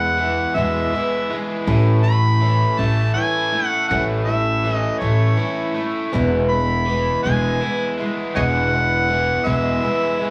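A slow 6/8 pulse with a straight feel carries this short cut from a longer folk rock and heartland rock piece, and its mood is warm and jangly. Up front, a gritty, amplified and overdriven harmonica takes the solo melody in a pop style, using tongue slaps and scooped notes. Beneath it, a picked twelve-string acoustic guitar adds a shimmering, octave-doubled accompaniment with an auditorium-like body. A bright, crunchy electric guitar, overdriven and double-tracked, plays a picked riff, while an upright bass with gut strings thumps out a woody pizzicato line near the front of the mix and stops at 9.8 seconds. The harmony moves from E to A at 1.7 seconds and back to E at 6.1 seconds, all heard as a band playing live in one room, with small room ambience and moderate large studio reverb.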